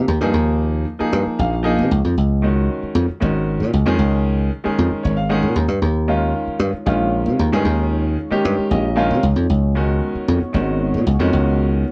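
Soaring and bright, this jazz passage in 7/8 sets a clear, smooth concert grand piano with vintage character over a punchy, foam-muted thumbed slap bass that sits up front, with the piano adding short fills around 1.1, 4.8 and 8.4 seconds across suspended chords before a deep, moody sawtooth pad with ring modulation and chorus enters very quietly at 6.8 seconds, all heard in a small room with a cassette-tape cast.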